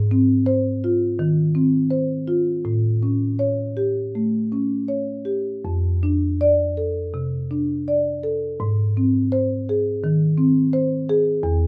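A solo marimba played with soft mallets opens the excerpt, its rosewood bars giving a woody, round tone that sits up front in the sound. This is a contemporary classical piece in 4/4, taken with a rubato feel that lets the phrases flow and breathe freely. The instrument covers a broad range, from deep E2 tones up to D5, and its mellow voice gives the music a warm, gently flowing mood. The harmony moves from G#6 to A7 at 2.6 seconds, then to F6 at 5.7 seconds, before settling back on G# at 8.6 seconds. A moderate reverb from a large studio adds a soft halo around each stroke, and the passage ends at 11.7 seconds, cut from a longer work.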